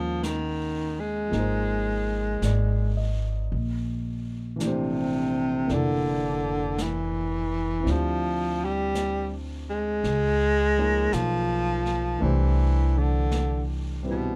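A dark, warm production with light reverb frames this short fragment of a romantic, tender jazz ballad with a gentle swing. Up front, a breathy baritone saxophone carries the melody in a mellow subtone, its soft attacks, scooped notes and vibrato giving the solo line a smooth, tender voice. A concert grand piano supplies velvety, vintage-toned accompaniment with deep bass and audible action noise, while a woody, plucked upright bass with steel strings sits close and prominent beneath it. A brush kit enters at 0.2 s, with brushed snare and hi-hat kept low in a natural studio room sound. The harmony drifts through lush extended chords, moving from Ebm7 through Bbmaj9 and Db9 before settling on Cmaj7.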